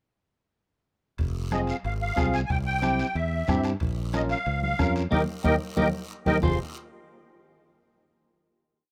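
A driving, straight 4/4 cumbia rhythm at 183 BPM in F minor opens this fiery short piece at 1.2 seconds with a punchy fingered electric bass figure, soft-beaten bombo, raspy guiro and very quiet, ringing metal-shell timbales, joined at 1.5 seconds by a reedy, shimmering musette accordion melody up front, clean picked triad chords on electric guitar and soft-handed congas in the background, moving through Fm, C, Bbm and Eb before a band accent and drum fill land on a final Fm chord at 6.4 seconds, with the rough feel of a small-room home demo.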